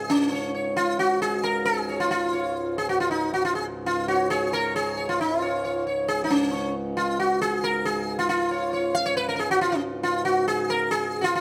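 Sitar and hand-pumped harmonium sound together from the opening moment of this serene, radiant Indian classical excerpt in raga Khamaj on Db, moving at 136 BPM in a straight 7/4. The up-front, bright sitar carries the melody between Db4 and F5, its buzzing tone haloed by shimmering sympathetic strings, while the reedy, breathing harmonium holds a low drone between Db2 and Ab2 well beneath it. Close, detailed microphones and a moderate recital hall reverb frame the music, which moves into a new section at 5.2 seconds before the cut at 11.4 seconds.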